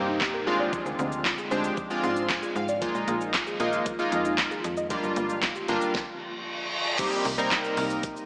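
Chorused retro synth keys front this short dance-pop excerpt, bright and glossy with a detuned, evolving sawtooth and pulse-wave tone, sitting up front with slapback echo and sidechain pumping as they carry the accompaniment and add a fill from 1.8 to 2.8 seconds. At 115 BPM in a straight 4/4 and C minor, the mood is bittersweet yet energetic, moving through Dm7b5, Bb7sus4 and Gm7 before landing on Cm7. A smooth R&B drum kit with a knocking kick, fat snare, metallic hats, handclaps, shaker and crash drives the groove, alongside a snappy, decaying FM bass with a metallic attack. Behind them, a glassy, ethereal FM pad holds slow-blooming chords, while a soft, round, dark pluck traces arpeggios with tape echo until it drops out at 5.8 seconds. The track stops briefly from 5.9 seconds, a reverse cymbal rises into an impact at 7.0 seconds, and a faint, grainy tube shaker joins for the closing moments. 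A lush hall reverb gives the whole mix a big arena sound.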